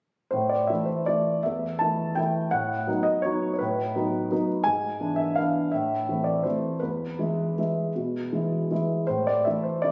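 Wistful and nostalgic, this short fragment of a classical piano waltz in A minor moves in 3/4 at a flexible, rubato pace somewhere between 153 and 181 BPM. A warm baby grand piano plays alone from 0.3 to 9.9 seconds, sitting up front and spanning from E2 to A5. The harmony passes through B7/A and E7/G# before settling on A minor, then moves to E and closes on an A5 at 9.1 seconds. The piano rings out in a wet recital hall reverb with a 1.7-second decay. It was captured on a phone in the room, so studio ambience and some compression colour the sound.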